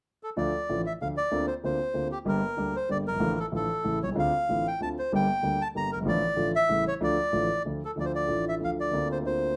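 Tango in a rubato 3/4, sultry and passionate, with a reedy, up-front bandoneon carrying the melody from 0.2 seconds over an intimate concert grand piano whose deep bass, vintage smoothness and audible action noise shape the accompaniment, the two heard in a moderate club reverb across this short cut from a longer piece.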